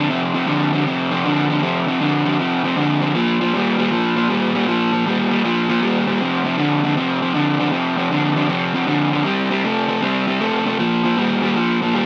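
Blues in F major at 157 BPM, swung on the eighth notes, with a laid-back, gritty mood. A single raw garage electric guitar carries the whole excerpt alone, picked and overdriven, sitting up front in a low register from F2 to A3. Its tone is warm and crunchy, bathed in a moderate spring reverb that gives the room a slight splash. The chords move through F5, Bb5 at 3.2 seconds, back to F5, then C5 and Bb5 at 10.8 seconds, tracing a compact blues progression. Cut from a longer piece, the clip runs just over 12 seconds.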